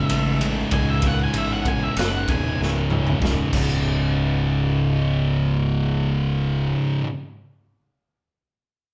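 A straight 4/4 pulse at 96 BPM drives this sludgy, ominous stoner and doom metal excerpt in C# minor, where two thick, dark fuzz guitars churn a low riff over a punchy, overdriven picked bass, one guitar sitting in the background, all in a wet large studio room that sounds like a band playing live together. An octave-fuzz lead guitar sings a short distorted melody until 2.6 s, while a raw garage drum kit with gritty, saturated tone, a punchy kick and dark cymbals plays from the start, pounds out a fill from 2.6 s to 3.2 s and drops away at 3.7 s. The harmony moves from C#m to a bare C#5 at 3.2 s as the piece shifts into its second section.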